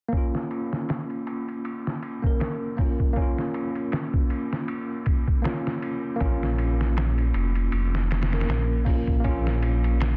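A dense, heavily limited master with little reverb frames this short cut from a longer trip hop piece, melancholic and dark in mood. A worn, slightly out-of-tune tine electric piano carries the accompaniment from the start, its mellow tone colored by harmonic tremolo, 12-bit sampler grit and tape echo as it rests on a single minor chord. Beside it, a sampler-style drum kit of kick, snare, hi-hat and ride sounds pitched down and muffled, with a thumpy kick, a medium-tuned snare, low-pass filtering on each drum and cymbal, and a touch of small-room reverb. The groove has a lightly swung sixteenth-note feel. At 6.2 seconds a detuned saw bass enters, deep and rumbling with a beating, saturated edge, and it stands up front through the closing seconds.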